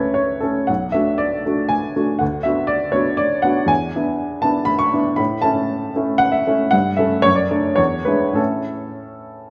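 Passionate and hopeful, this brief romantic character piece for solo piano moves in triple metre with a flexible, rubato feel. An upright piano carries everything alone from 0.0 to 9.5 seconds, its woody, polished tone sitting up front, with a short sustain. The playing spans from B1 up to C#6. The harmony opens on A/C# and passes through Bm7 and E7 before settling on A, then turns through A7/G, D/F# and E7 to resolve on A at 8.4 seconds. A generous recital hall reverb surrounds the instrument, and the clip is cut from a longer piece.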